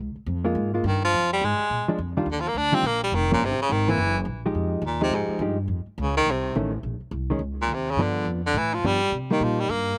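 A swinging 210 BPM pulse in 4/4 drives this smoky small-group swing and bop fragment in F minor, where a woody, growly upright bass underpins dark, clean hollow-body guitar chords from 0.4 seconds, and an edgy baritone saxophone with light vibrato and a slapback echo takes the up-front melody from 0.9 seconds, all in a dry, roomless outdoor sound.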